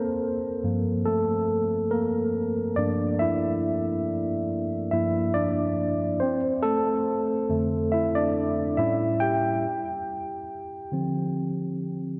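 A 70 BPM 4/4 with a gentle swing on the 16ths carries this sultry, smooth R&B fragment in G dorian, tuned to A4 = 441 Hz, where a solo tine electric piano, worn, slightly out of tune and clean, sits up front as if heard through built-in speakers, spanning F2 to G5 under a diffuse ambient delay and moving from Gm7 to F6 at 6.2 seconds, then A7 and Dm7 before it stops at 12.2 seconds, all in a dreamy mix soaked in a lush 2.8-second hall reverb.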